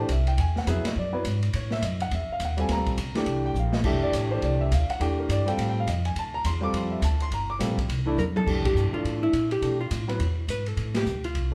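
A moderate large-studio reverb surrounds a band playing live in one room, giving this short cut from a longer piece a roomy, natural sound. The style is relaxed, sophisticated small-group swing and bop in F major at 208 BPM, with the eighth notes swung. A concert grand piano with deep bass and long sustain accompanies through chords such as Gm9, C9 and Fmaj7, and a woody pizzicato upright bass with steel strings anchors the low end, both sitting up front. The acoustic drum kit sounds smooth, with dark cymbals, a rolled-off top, a medium-tuned snare and a boomy kick, and it plays fills at 3.6 and 8.2 seconds. At 8.2 seconds a clean, picked hollow-body electric guitar enters up front with the melody, and the band hits accents as the harmony moves through Fmaj9, Bm7b5 and E.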